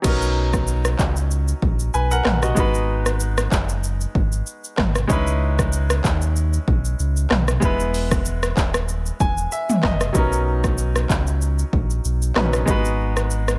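Afrobeats at 95 BPM in B major, this breezy, romantic excerpt rides a gently swung sixteenth-note feel across its 13.6 seconds. A deep house drum kit sits up front with a punchy kick, dark hats, handclaps, rim clicks, shaker, toms and crash cymbal, its layered electronic sound re-recorded in a small room. Beneath it, a sub bass with an added octave holds a full, sine-like tone with a fast attack and sustained notes, also placed close and prominent. A clear concert grand piano carries the accompaniment through lush seventh and ninth chords, moving from Bmaj9 through G#m7, C#m9 and Emaj7 before returning to Bmaj9. Its polished, present tone has short sustain, and it steps forward with a fill between 8.9 and 10.2 seconds. A digital ambience surrounds the whole mix.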